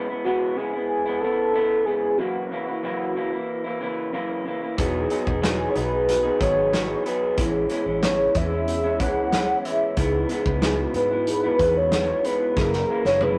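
A velvety sawtooth synth lead with chorus, phaser and vibrato carries the melody of this laid-back, dreamy indie bedroom-pop piece at 92 BPM, over a slightly broken-up, lo-fi electric guitar with warbly pitch drift that opens the piece before mellow tine electric piano, a round, foam-muted electric bass and a loose indie drum kit with a tight kick join at 4.8 s, with a drum fill closing on F#7 at 12.6 s in a rough rehearsal-room sound with tube saturation and moderate reverb.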